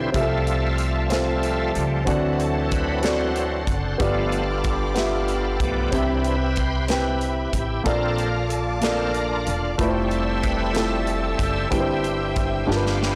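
A shouting, lightly overdriven tonewheel organ takes the solo from the first instant of this slow gospel excerpt in C major, sitting up front with a slow rotary speaker and chorus vibrato. It is joined at once by a warm grand piano playing accompaniment, a thumpy, woody pizzicato upright bass, and a lush, distant bowed string section holding chords with vibrato and portamento. A polished modern drum kit comes in at 0.1 s with a punchy kick, a medium-tuned snare and hi-hat, and it closes with a fill from 12.7 s. The 6/8 metre moves at 62 BPM in dotted quarters with a straight, hopeful and reverent feel, as the harmony passes from Fmaj7/C through D7, G7 and Cmaj7 to Bbmaj7, Fmaj7 and C/G. A moderate echo chamber reverb with a 1.7 s RT60 surrounds the parts, and the whole recording is blown-out and overdriven.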